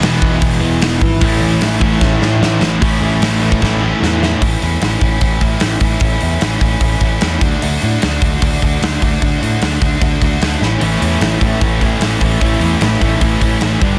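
Upbeat and rowdy, this punk rock passage is cut from a longer piece and drives along in a straight four. A bright, cranked stack guitar plays an overdriven riff throughout. Behind it, an overdriven electric guitar and a sludgy, double-tracked distorted guitar thicken the riff, dropping out at 4.4 seconds and returning at 10.8 seconds. Underneath, a growly, amped, overdriven picked bass carries the low end. A big acoustic rock kit sits up front with a punchy kick, medium-tuned snare and hi-hat, adding drum fills, the first at 2.0 seconds. The sound is dense and heavily limited in a modern master, with little reverb.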